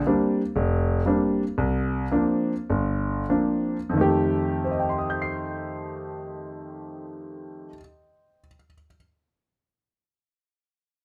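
Close, detailed microphones and light reverb give this short solo jazz excerpt an intimate, up-front sound, where the concert grand's mechanical action noise is audible beneath its deep bass and natural, warm tone. The piano plays alone from 0.1 to 9.0 seconds with a relaxed, sophisticated swing, ranging from low in the bass to high in the treble. It slows down over the first 4.0 seconds, moving from a Bb69 chord through a C9sus4 before settling on F9 at 4.0 seconds.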